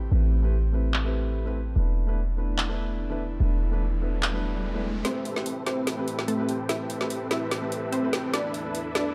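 A dark, lightly reverberant production frames this lush, bittersweet future bass passage, cut from a longer piece, in A minor at 146 BPM with a half-time, gently swung feel. An airy, breathy pad sustains chords throughout, while a soft, felt-muted upright piano with delay adds mellow, intimate accompaniment. Through the opening 5.0 seconds, a deep, boomy 808-style bass sits up front beside an electronic impact and riser. The trap kit enters at 0.9 seconds, its woody snare, metallic hats and handclaps filtered and placed up front. The second half turns into a build-up with a drum fill, as a punchy, detuned unison pluck carries the melody through delay and huge, bright supersaw chords play a riff under a filter sweep. The harmony moves between Am9 and E7sus4.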